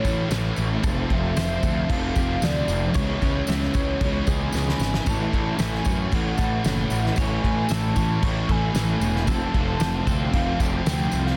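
Shoegaze and dream pop rock at 114 BPM in a straight 4/4, dreamy and wistful, moving through A, F, C#m7 and Amaj7 in this short cut from a longer piece. A hollow, woody clarinet-like synth lead carries the melody with chorus, phaser and slapback echo over a very quiet brassy analog pad, while a thick fuzz guitar, a biting overdriven guitar with reverse reverb and a double-tracked semi-hollow guitar stack their riffs beneath twangy, direct-recorded clean arpeggios. Up front sit a growly fuzz bass and a loose indie drum kit with a fat snare, punchy kick and dark cymbals that fills from 4.5 to 5.1 seconds, joined by a jingly tambourine in a small room, all pressed into a dense, heavily limited master.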